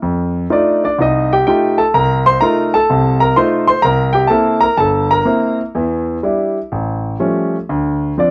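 Worn, warbling old cassette tape with drifting pitch and light reverb wraps this brief, relaxed and sophisticated solo jazz excerpt, where a single up-front concert grand piano with deep bass, short sustain and audible action noise plays with a rubato swing feel from F7 through C7 and Em7 to Aaug7 and Dm7 over 8.3 seconds.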